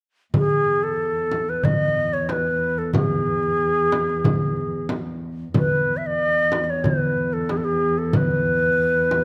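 In a straight 4/4, crisp, compressed darbuka and a frame drum drive this festive Arabic maqam ensemble excerpt from 0.3 seconds, while a dark, woody bowed cello holds a low drone with vibrato beneath them. From 0.4 seconds a reedy, airy end-blown ney carries the melody up front with a soft attack and straight tone. A moderate recital-hall reverb gives the whole passage a spacious sense of place.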